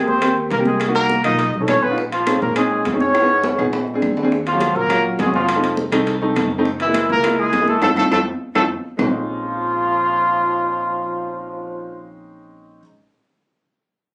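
Fiery and driving, this Afro-Cuban jazz cut pairs a breathy, mellow trumpet melody with scooped notes and light vibrato, placed up front, against a brilliant, punchy trombone second line further back. A woody, polished upright piano with long sustain sits up front in the accompaniment, while a pizzicato upright bass with steel strings anchors the low end. High-tuned congas and tight bongos sit very quiet, with ringing metal-shell timbales and dry claves in the background; a band accent lands at 7.8 seconds, and the percussion drops out at 9.1 seconds as trumpet, trombone, piano and bass carry on in a light club reverb.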